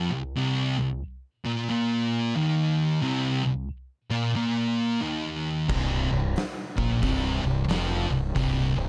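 This stoner and doom metal fragment opens at 0.0 seconds with two thick fuzz guitars playing a picked riff over a single C minor chord, one with a warm tone and the other darker, both distorted and up front. The eighth notes carry a loose swing that gives the heavy groove a hypnotic sway. At 5.7 seconds a fuzz fingered electric bass joins with a growly, overdriven sound, along with an oversized low-tuned drum kit of kick, snare, hi-hat and crash. The drums sound saturated and gritty in a bright stone room, with a punchy kick, a medium-tuned snare, dark cymbals and a rolled-off top, and they drop out at 8.6 seconds. The overall mix is dry, keeping the dense low end close and crushing.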